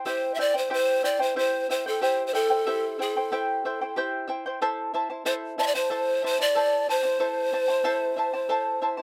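A breathy, wooden pan flute with vibrato, a soft chiffy attack and an unsteady, up-front tone carries the melody in this festive yet wistful Andean folk fragment at 92 BPM in A minor pentatonic, over a fingerpicked charango whose shimmering double strings sit close and detailed in a dry room as the harmony moves from C to A minor at 4.6 seconds.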